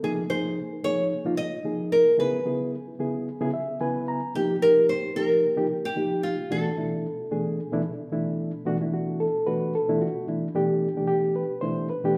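Jazz at 111 BPM with a light sixteenth-note swing, slick and nocturnal, cut from a longer piece and set in a large, reverberant room where the band plays live together. A bright, small-sounding fingerpicked nylon-string guitar carries the melody up front until 8.1 s, over a reedy, mellow electric piano heard through its built-in speakers that comps on suspended chords and slips in a fill at 3.3 s. From 8.7 s the harmony turns to B phrygian and the electric piano carries on by itself to the close.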